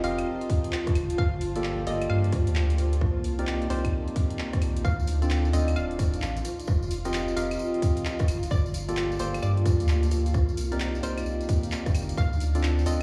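Soulful and moody, this short excerpt of two-step UK garage in G minor moves at 131 BPM with a 64% swing on the 16th notes, cycling through a chord loop of F7sus4, Gm9, Cm9 and Dm7. A saturated, deep sub bass with a fast attack sits up front with sidechain pumping, alongside the tight, layered electronic kick, which enters at 0.5 seconds and stops at 12.3 seconds. A punchy, tape-warm analog drum machine supplies claves, handclaps, hi-hat and rim clicks, and a jingly, band-limited acoustic tambourine joins at 4.9 seconds. Percussive, organ-like stabs with a ring-modulated edge carry chorus, cassette-tape colour and digital delay, while a bouncy, detuned square-wave pluck plays the melody between C5 and F5 through chorus, tape and dub echo. Underneath, a very quiet ethereal pad holds sustained chords with a phaser and ensemble chorus, and a cloudy, evolving granular pad pumps in the background. 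The whole mix sits in light reverb with the air of a big sound system in a bare room.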